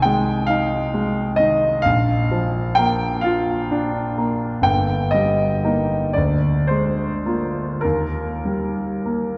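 A clear concert grand piano sits up front in this short excerpt from a romantic nocturne, playing alone for its full 9.4 seconds. The mood is tender and nostalgic, unfolding in Eb major at a slow 33-46 BPM in 12/8, with a freely breathing rubato feel. The piano's open tone reaches from a deep bass at G1 up to Ab5, and the harmony moves from Ab/C through Bb, Eb/G and Bb7/D before settling on Eb at 7.8 seconds. A lingering church reverb with a 2.8-second decay surrounds the instrument, giving the sense of a grand piano heard in a resonant hall or sanctuary.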